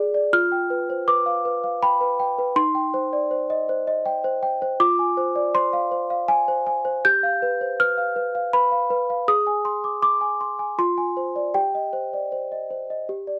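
Closely miked and nearly dry, this brief classical lullaby excerpt in C minor at 80 BPM in a gentle 3/4 features a worn solo celesta, bell-like and slightly out of tune with soft felt hammers, sitting up front across a range from Eb4 to G6 as it moves through G7/F, Cm/Eb, Dm7b5/F, G7, Ab and Fm before settling on Cm/G at 11.5 s, leaving a wistful, eerie mood.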